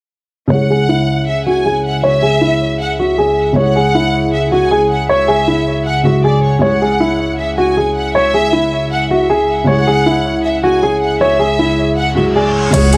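A small room ambience with light reverb frames this brooding, hard-hitting trap excerpt in C# minor at 157 BPM with a half-time feel, where a dark baby grand piano with audible action noise carries the melody through a low-pass filter and digital delay while a smooth studio violin section plays a second line above it. A felt-muted upright piano adds soft, vintage accompaniment, and a warbly, nostalgic tape-like pad holds detuned chords from 0.8 seconds under a filter sweep that runs until a reverse cymbal leads into an impact at 12.7 seconds. At that moment a punchy 808-style bass and an overdriven trap kit with metallic hats and 12-bit sampler grit strike just before the cut.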